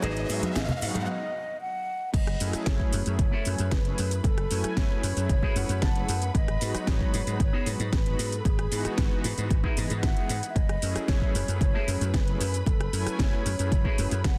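Groovy and cosmic, this nu-disco excerpt moves at 114 BPM in F# dorian, opening with a short build-up where a riser, cabasa, bongos and congas sound until 1.1 seconds, a filter sweep on the clean electric guitar runs through a brief break, and the drop lands at 2.1 seconds on chords moving from G#m7 through F#m9 and Emaj9/G#. A punchy, up-front electronic kick and a house kit with a cracking snare and metallic hats drive the groove beneath a bright, foam-muted thumbed slap bass with tube saturation and sidechain pumping. A scooped, envelope-filtered guitar riff with lush chorus and slapback echo adds fills at 5.3 and 9.5 seconds, while a detuned sawtooth pad with tremolo, distant bowed violin chords, and a breathy, hollow flute melody with analog delay float over a dense, heavily limited master.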